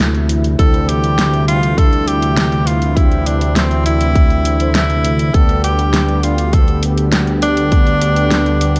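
A dark, lightly reverberant production gives this driving, nocturnal synthwave excerpt its late-night glow, moving at 101 BPM in a straight 4/4. From the start, a smooth, detuned sawtooth pad holds sustained chords in the background with chorus and sidechain pumping, over a fat, thick analog bass sitting up front on D with a fast, plucky filter attack. A pop drum kit supplies a fat snare and warm hi-hats, and at 0.6 seconds a punchy, layered electronic kick joins up front, dropping out at 7.8 seconds. Also at 0.6 seconds, a clear tenor saxophone takes the solo melody with light vibrato and a digital delay, while mellow, round synth brass adds chorused stabs with a filter sweep in the background. The harmony rests over a D bass, moving from Am/D to C/D and then to G/D at 5.3 seconds, all within a single section cut from a longer piece.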